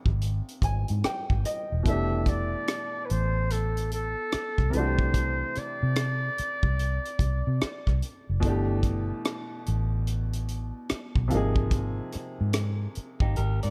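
A woody, intimate upright piano opens this relaxed, sensual neo-soul R&B excerpt with a fill, soon joined by a round, foam-muted vintage electric bass and a tight funk kit of hi-hat, kick and rim click, moving at 73 BPM with a swung sixteenth feel in F lydian over lush chords from Abmaj9 to Fmaj9, Cadd9, Gadd9 and Abadd9. From 1.9 to 8.0 seconds a trumpet with a metal mute carries the melody, breathy and buzzy with light vibrato and scooped notes, sounding whispered yet close. At 13.2 seconds an electric guitar through a small old amp adds a brief, slightly broken-up lo-fi second line, all set in a dark, warm studio reverb.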